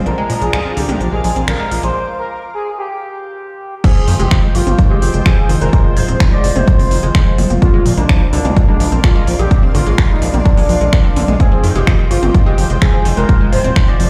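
This melancholic, cinematic stretch of melodic techno, cut from a longer piece, opens with a lush, airy unison pad holding sustained chords in the background, a nasal analog pluck spinning arpeggios through chorus, phaser and dub echo, and a very quiet granular cloud pad drifting above in a blurred, evolving haze. Almost at once a gritty, saturated synth bass with an aggressive sawtooth bite pumps underneath, a smooth expressive lead with vibrato carries the melody through dub echo, and a tape-warm techno kit adds smooth hats, finger snaps, toms and crash. The opening is a build-up that thins into a break at 2.0 seconds, and the drop lands at 3.8 seconds, where a punchy, up-front electronic kick joins along with an eerie, inharmonic synth bell whose warbling FM tones sit in the background as a second line. The harmony moves between Bb and Fmadd9, while the pumping on the bass, unison pad, pluck and bell gives the drop its breathing pulse. 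The whole is heard as if played on a big sound system in a bare room, with large studio reverb lending a cavernous depth.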